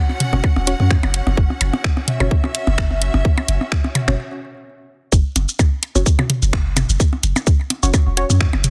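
Minimal techno at 128 BPM in 4/4, with a light swing on the 16ths and a clinical, sparse mood. A bright, intense studio string section opens the piece, bowed close with vibrato and pumping against the sidechain, before dropping out at 4.2 seconds. A tight, up-front electronic kick anchors the groove beside a layered garage kit of finger snaps, shaker and bright hats, its snare softly clipped, while overdriven percussion blips and toms scatter through a digital delay. A deep, punchy sine sub bass with a pitch-drop attack sits forward in the mix and breathes with sidechain pumping, under a muted, filtered dub chord stab whose detuned sawtooth pluck evolves through chorus and delay. After a brief break, the drop lands at 5.1 seconds, and the dry, densely limited master keeps the sound tight and immediate in this short cut from a longer track.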